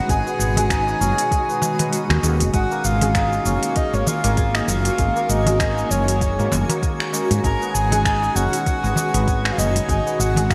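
A breathy, flute-like synth lead carries the melody from the first moment of this mystical, earthy organic downtempo excerpt in G# dorian at 98 BPM, over muted felt-like synth keys, a cloudy granular pad and a faint twinkling granular texture, with a bright, shimmering santur ringing out arpeggios through delay. A growly, round fretless electric bass sits up front with a soft electronic kick, joined by finger snaps, crisp hi-hat and shaker from an organic electronic kit with gated reverb, and a very quiet metal-shell darbuka enters at 0.4 seconds. The kick drops out between 1.9 and 2.5 seconds as the chords move from G#m7 to F#6, all set in a lush hall with a bright 1980s-style digital sheen.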